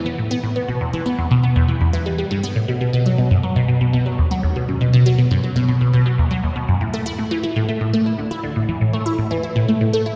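In a straight, even 4/4 pulse, a lone resonant blip pluck carries this mysterious, expansive ambient passage, cut from a longer piece, from start to finish across its 10.1 seconds. The synth is squelchy and bright, with a sawtooth edge over a sub octave and a fast, snappy filter pluck, sitting up front and coloured by phaser, subtle chorus and analog delay. A wet concert-hall reverb and a dark production surround it, lending the notes a cavernous sense of space.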